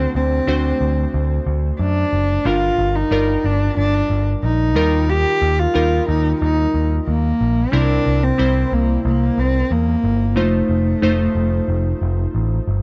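1980s-style pop with a nostalgic, dramatic mood, this short cut from a longer piece sets a single bowed cello up front, played sul tasto with vibrato and a woody, shadowy tone, carrying the melody until 12.3 seconds. Beneath it, glassy digital keys with a warbling chorus and a filter sweep supply bright, decaying chords that move from D7 through Gm7, Ebadd9 and C7 to F7, while a picked electric bass adds a round, punchy, amped low end. The sound is dry and close, like a 1970s-style studio recording.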